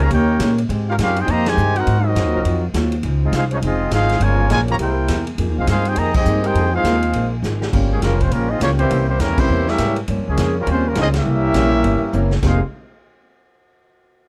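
Big band swing in F minor at 205 BPM, swinging and sultry, with a mellow, lightly vibrato trumpet section up front carrying the melody over a second line and intermittent sustained chords from tight, clear trombone sections in the background, a woody pizzicato upright bass, a boxy, very quiet picked parlour acoustic guitar, a distant, roomy drum kit with a boomy kick and fills at 7.4 and 12.1 seconds, and a grand piano that joins at 7.7 seconds, all punctuated by band accents in a small room.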